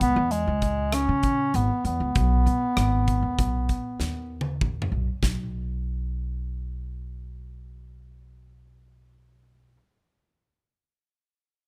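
This progressive instrumental piece in 5/4 is driving and bright, with a clear, vintage-toned bass clarinet carrying a classical-style solo melody over C#m and B chords until 4.6 seconds. A woody pizzicato upright bass and a polished, airy rock drum kit with a punchy kick sit up front, and the drums play a fill before stopping at 5.4 seconds. The bass then plays alone until 9.8 seconds as the chords fall away, all captured with close, detailed microphones and little reverb in this excerpt cut from a longer piece.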